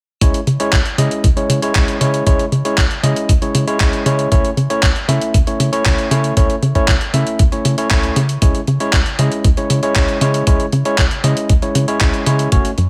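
Melodramatic and danceable, this italo disco excerpt rides a tight, punchy sequencer bass with a dark, detuned filter pluck, under a bright, barky overdriven tine electric piano that stabs up front through a combo amp, trailed by tape echo. A thumpy, compressed electronic kick drives the straight 4/4 pulse. A dusty, gritty sampler-style soul kit adds handclaps and hi-hat, both parts soaked in overdrive and studio reverb, the kit also with gated reverb, all set in a digital ambience.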